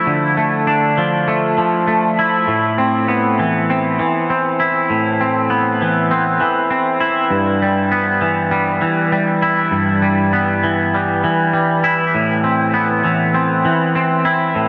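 In a straight 4/4 at 99 BPM, this cathartic, cinematic rock excerpt in A minor features a solo electric guitar, bright, clean, picked, compressed and twangy, sitting up front between G2 and E4 with lush chorus and delay as it moves through Dmadd9, Amadd9 and Em/G chords inside a huge ambient reverb that soaks the dreamy mix.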